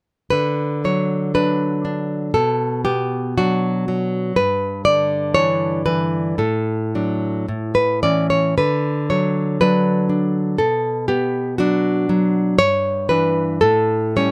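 In a rubato 2/4 pulse drifting between 53 and 62 BPM, this warm, nostalgic romantic passage for solo classical guitar has a single up-front, fingerpicked nylon-string guitar with a warm acoustic tone, lightly touched by reverb, moving through a D major progression of D, Bm, Em7/G, D/A and A from 0.3 to 14.3 seconds before reaching A7 as it breaks off from a longer piece.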